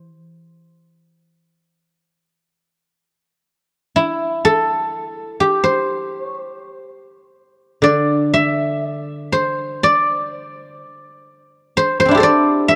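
Rubato and unevenly pulsed around 62 BPM in 2/4, this pastoral passage of Chinese traditional music, cut from a longer piece, flows in C gong mode with a solo guzheng. Played with fingerpicks and sitting up front, the guzheng sounds mellow, silvery and ringing across a range from D3 to E5. It sounds briefly at the very start, returns at 4.0 seconds, and moves into a new section at 7.8 seconds, all within a dark production and a moderate plate reverb.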